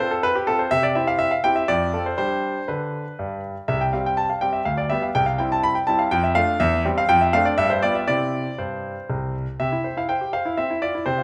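A clear concert grand piano plays alone through this short, cheerful and elegant classical-period sonatina excerpt in C major. The music moves in 3/4 at 123 BPM with a rubato feel, spanning deep bass up to the upper register and cadencing back to C at 8.1 seconds. The piano sits up front and intimate, polished with long sustain and audible action noise, while a lush recital-hall reverb gives the performance the air of a church or concert hall.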